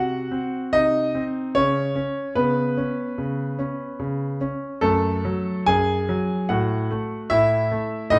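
A classical-period piano sonatina in 4/4 unfolds at 73 BPM with a rubato feel, its mood elegant and cheerful. A solo concert grand piano carries the whole 8.2-second excerpt, ranging from F#2 to G#5 with a warm, smooth tone, deep bass and a vintage character. Close, detailed microphones place the instrument up front, while a moderate recital hall reverb of 1.4 seconds lends it a sense of space. The harmony moves from Cdim to Bsus2/C# at 1.6 seconds, settles on F#m at 4.8 seconds, and shifts to F#m/A near the end. The passage is cut from a longer piece.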